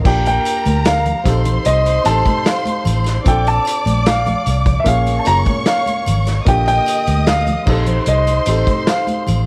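Lush 1970s-style soul in Bb major at 75 BPM, this short passage cut from a longer piece feels smooth and romantic from its first bar. A dark, mellow concert grand carries the melody high in its range, while a dark baby grand with audible action noise and short sustain comps beneath it in an intimate voice. A lush studio string section plays a second line with vibrato and portamento, bowed with an expressive, smooth top. Up front sits a vintage foam-muted fingered electric bass, round and amped, over a vintage acoustic drum kit with a punchy kick, medium-tuned snare, hi-hat and crash, its dark cymbals and rolled-off top colored by a pumping small room. Bright, thin-skinned congas enter at 0.3 seconds in the background, and a very quiet, shimmering triangle adds a band-limited glint, all in a dry sound with little reverb as the chords move from Bb6 through F7, Bbmaj7 and a rootless Gbmaj7 to Ebmaj7 over Bb and back to F7.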